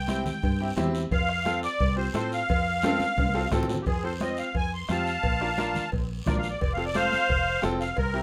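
Danceable and joyful, this cumbia excerpt in F major moves at 175 BPM in a straight 4/4, with a reedy, shimmering musette accordion up front carrying the melody and taking a solo from 3.9 seconds, over a dark, round fingered electric bass, a brilliant, woody upright piano accompaniment, a dry, close bombo, thick-skinned high-tuned congas, distant ringing cowbell and timbales, and a raspy guiro in the background, with a drum fill from 2.8 seconds leading into the solo section, all set in a moderate studio ambience.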